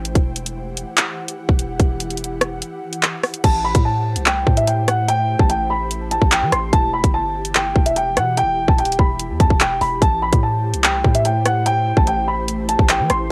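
Ominous and tense, this half-time drill hip hop excerpt at 146 BPM sets an ethereal, detuned pad with chorus and tape grit over a punchy, heavy 808-style bass and an up-front electronic drum kit of hard-clipped kick, hi-hats, handclaps, rim clicks and crash, and after a brief break a dark, worn grand piano with audible action noise and analog delay takes the melody at 3.4 seconds across an Em-to-Am7 progression, all with the dry, intimate feel of a home cassette recording.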